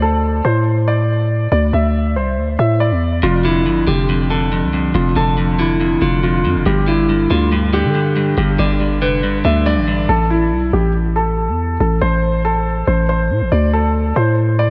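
A half-time drill pulse in 4/4 drives this ominous, cold hip hop fragment, anchored by a growling 808-style bass that sits up front with a buzzy, sine-like body, a fast attack and a decaying tail. Above it, a dark baby grand piano carries the melody in a mellow, shadowy register, softened by a low-pass filter and given a faint shimmer by subtle chorus and analog delay. At 3.2 seconds a clean electric guitar joins as accompaniment, its picked, compressed tone kept low in pitch and treated with spring reverb and a low-pass filter, before it drops out at 10.1 seconds. That same moment opens a new section, where the piano and bass carry on together to the cut-off. The whole mix is dreamy and soaked in a lush hall reverb, lending the sparse arrangement a cavernous, chilly atmosphere.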